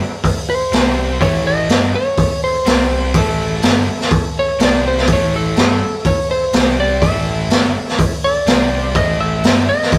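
A rough rehearsal-room recording with light reverb captures a swaggering, driving blues rock and southern rock groove, cut from a longer piece: a saturated raw garage drum kit with a boomy kick and high-tuned snare sits up front from 0.2 s, a bright, double-tracked cranked stack guitar plays the riff beside an amped, overdriven picked electric bass, a slightly broken-up, compressed lead guitar carries the melody, and a very quiet, thick, gritty tonewheel organ holds sustained chords through a slow rotary speaker as the harmony alternates between A and C5.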